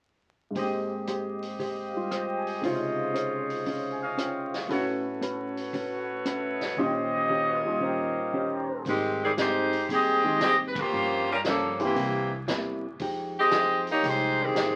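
A swinging 4/4 groove at 116 BPM drives this joyful big band excerpt in Ab major, with a studio drum kit of punchy kick, medium-tuned snare, ride, hi-hat and rim clicks under an intimate grand piano, whose action noise is audible, and a dark, clean hollow-body guitar comping in the background. Up-front trumpets with a smooth top fire stabs until 8.9 s, when an edgy, close-miked saxophone section takes the melody with loose vibrato, and a woody, growly upright bass joins from 8.8 s, and the whole band hits an accent at 10.7 s. Wet studio reverb and the crackle of a very old 78 rpm record colour the sound.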